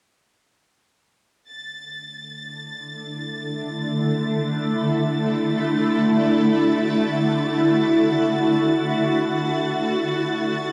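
Floating in free time, this weightless, peaceful ambient passage rests on a single D major chord and is cut from a longer piece. A clear chamber violin section enters first at 1.5 seconds, holding a high, intense A6 with bowed vibrato as a texture. An analog drone joins at 1.9 seconds, very quiet and low in the mix, its vintage sawtooth and pulse-wave tone warbling and evolving beneath. At 3.1 seconds the shimmering ambient pad arrives up front, laying down sustained chords from D3 to F#4 with slow attacks, long releases and an ethereal, granular, octave-up sheen colored by chorus, phaser and its own reverb. The whole texture sits in a vast, echoing space with a huge, wet reverb tail of 8.1 seconds, and a cassette-tape character colors the sound.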